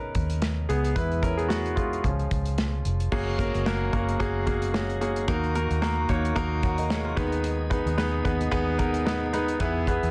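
A bright concert grand piano anchors this piano-driven pop excerpt, its brilliant, polished tone sitting up front with a deep low end as it carries the chords from the first moment. The mood is warm and uplifting, moving at 111 BPM in 4/4 with a gentle swing on the sixteenths, in F# major. Beneath it, a vintage fingered electric bass gives a dark, round, punchy, foam-muted tone, while a modern studio drum kit of kick, snare, hi-hat and crash joins at 0.1 seconds with a smooth, rolled-off sound, a tight kick and a medium-tuned snare heard in a small room. At 3.1 seconds, as the harmony lands on F#add9, a very quiet tonewheel organ enters with full, lightly overdriven sustained chords, key click and a fast rotary speaker. The chords move through G#m/D#, E, C# and D#m under light studio reverb, and the master is dense and heavily limited in a modern style.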